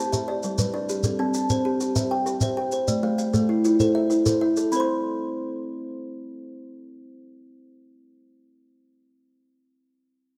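A straight 12/8 pulse at 130 BPM drives this hypnotic, warm fragment of a southern African traditional piece, built on an mbira-style interlocking cycle that moves through G, C and A minor before the harmony falls away at 4.7 seconds. Two kalimbas play ringing arpeggios across the whole 9.8 seconds, their woody, hollow-box fingertip plucks soft and airy, with one set up front. A grainy, up-front shekere adds percussion from 0.1 to 4.9 seconds, all in a rough home demo mix with light reverb and small-room ambience.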